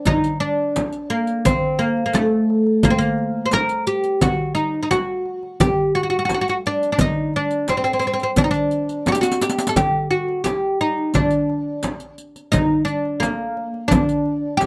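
A steady, straight four-beat pulse from the darbuka, frame drum and riq carries this hypnotic, soulful Arabic maqam ensemble passage, cut from a longer piece, with a drum fill breaking the flow at 9.1 seconds. Up front, a woody, fretless oud with double strings plucks the melody from A3 to C5, its plectrum attack deep and close. Beneath it sit the clay-shell darbuka struck with hard hands, the large frame drum played with soft hands, and the riq's dark, close and dry jingles, all captured in detail by close microphones.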